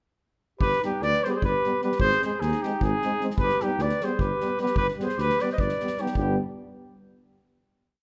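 At 0.6 s a Balkan brass band launches a short, complete piece in a brisk 7/8, counted at 302 BPM in eighths, with a virtuosic yet bittersweet mood. A mellow trumpet with light vibrato carries the melody in hook-like motifs, sitting up front yet sounding distant and roomy. Beneath it, a vintage-toned clarinet traces a harmony line mostly in thirds, while a dark, punchy tuba with a smooth top anchors root-and-fifth bass on the main beats. A soft-mallet acoustic drum kit with a fat snare and punchy kick fills a big room. From 0.8 s, a soft-attack French horn and a euphonium, both with light vibrato, add offbeat chord tones in the background, as the harmony moves from G to Ab and back to G before the band settles on a final chord at 6.2 s under a light reverb.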